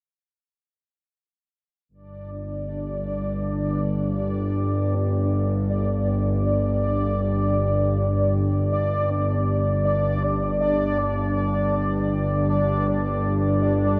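In free time, this dark, unsettling ambient drone excerpt opens with a tense, string-like bowed drone low in the register from 2.1 seconds, joined almost at once by an up-front bubbling texture of resonant, randomly stepping filter tones with chorus, while a deep, moody pad of sustained chords enters very quietly at 3.1 seconds, all bathed in a huge, wet reverb and the warbling pitch drift of worn old cassette tape.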